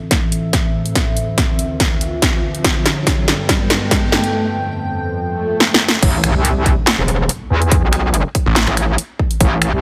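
An evolving, detuned wavetable pad opens this menacing heavy wobble dubstep excerpt in A minor at 142 BPM, its chords moving from Am through Dm7, Gadd9 and Fadd9 under a filter sweep, with chorus, built-in reverb and sidechain pumping, while a punchy, layered dance kit with snaps, claps, hi-hat and crash plays build-up fills beside an overdriven electronic kick and background risers and swells. At 6.0 seconds the half-time drop lands on an Amadd9 chord with an impact, and a metallic, bright FM wobble bass takes over up front with distortion and chorus. At 8.5 seconds a snarling, growling, detuned sawtooth bass enters briefly on A1, all under light reverb.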